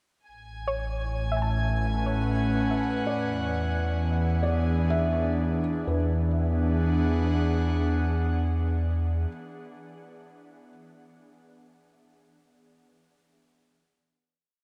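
This peaceful, luminous ambient piece moves slowly at 65 BPM in 3/4, centred in E mixolydian and tuned slightly below standard pitch. A breathy, up-front synth pad with chorus carries slowly shifting sustained chords, while a deep sine sub bass holds the roots underneath. Scattered notes from a soft, round pluck, coloured by ring modulation, chorus and delay, drift above, and a distant studio violin section floats on a pure, held high note played sul tasto before fading out by 5.9 s. From 3.1 s a felt-muted upright piano enters in the background with a free melody that never settles into a motif, its dark, vintage tone carrying audible action noise and a touch of delay. Everything sits in a vast, echoing space with a long reverb tail, and from 5.9 s the music rests on a final chord.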